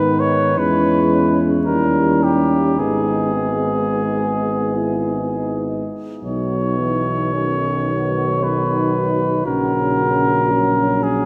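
Melancholic and yearning, this slow, rubato hymn-like classical piece for brass band moves in 3/4 at 52-58 BPM, opening in G# minor before turning to B major at 6.2 s, all bathed in a wet cathedral reverb. A mellow, soft-attacked cornet carries the melody up front and close, while a dark, distant French horn section sings a second line in the background beneath it. A vintage-toned euphonium with vibrato and a smooth-topped trombone supply the accompaniment, and a roomy tuba with light vibrato anchors the bass throughout this fragment of a longer work.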